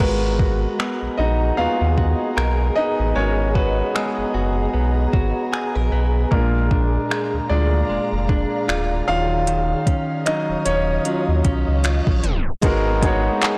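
A clear, intimate grand piano carries a solo from the start, its action noise audible up front, over ethereal sustained pad chords with ensemble chorus and sidechain pumping and a clean, direct-recorded electric guitar playing arpeggios through tape echo. This is a longing, late-night contemporary R&B cut at 76 BPM with a swung 16th feel in G# dorian, moving from G#m9 through A#7 and D#m9, anchored by a deep sine-toned sub bass with octave and a produced drum kit of soft kick, metallic hats, finger snaps, handclaps and a soft-clipped snare. A background reverse cymbal and downlifter enter at 11.4 seconds, and a tape stop at 12.2 seconds caps the blown-out, overdriven mix.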